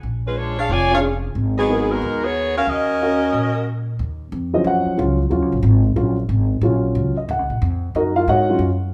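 Big band swing fragment with a sultry, dramatic mood, where a growly, woody pizzicato upright bass runs throughout beneath an upright piano with long sustain, while a smooth-topped saxophone section carries the melody with vibrato from 0.3 to 3.7 seconds before the piano takes a solo at 4.0 seconds, all captured live in one room with a wet, large studio reverb.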